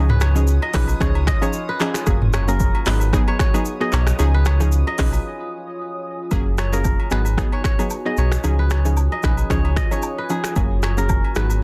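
A swung 4/4 afrobeats groove at 113 BPM rides a deep, up-front sine sub bass and a tape-warm, up-front electronic drum kit with a deep kick, crisp hats, snaps, handclaps, rim clicks, shaker and toms, its snare softly clipped, while agogo bells and woodblock sit close and dry in the background. Over this smooth, mellow bed, a fingerpicked acoustic kora rings out a riff through tape echo, a detuned sawtooth analog pluck with a filter sweep and chorus adds round, bright accompaniment, and a moody, wave-folded ambient pad holds slow-attack chords far behind. The excerpt moves through C#add9, F#add9 and G#m7, with a break at 5.3 seconds before a second section begins at 6.3 seconds, all in a dense, heavily limited modern master.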